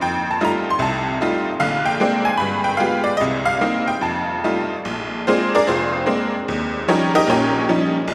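A tack piano carries this short solo jazz excerpt alone, its metallic, jangly attack sounding vintage and up front as it spans from F1 to C6. The mood is playful and relaxed, moving at 150 BPM in 4/4 with a swung feel on the eighths and a rubato looseness, centred on Bb mixolydian and tuned slightly sharp to A4 = 441 Hz. The harmony moves through rich extended chords, opening on F9 and passing through Bb9, G7b9 and Cm7 before returning to F9. At 4.9 seconds the music shifts into a new section, where the piano takes a honky-tonk turn over Bb9 and then Eb9 until 8.1 seconds. A wet cathedral reverb with a 7.0-second decay places the percussive instrument in a vast, echoing space, so its bright tone rings out as a long wash around the close-up attack.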